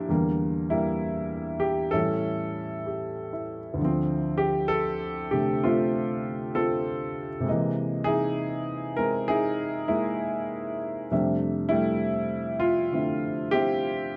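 Dark, moderately reverberant studio sound frames this swinging, playful solo jazz piece cut from a longer work, where a warm, present baby grand piano sits up front and moves with a loose rubato swing through Em7b5, A7 and Dm7 to a C7alt that resolves onto Fmaj13 at 11.1 seconds.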